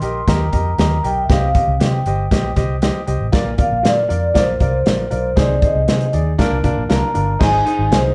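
Recorded live in one room to cassette tape with moderate studio reverb, this short cut from an uplifting, joyful 1960s-style soul tune moves with a straight, bright 4/4 drive. A mellow, close-miked vibraphone with soft mallets and slow motor vibrato carries the melody over brilliant concert grand piano accompaniment, a dark, round, foam-muted fingered electric bass, and an airy, up-front acoustic drum kit whose punchy kick and medium-tuned snare carry a gritty vintage 12-bit sampler edge. Near the end, at 7.4 s, a slightly broken-up, lo-fi electric guitar through a small old amp adds a brief picked riff.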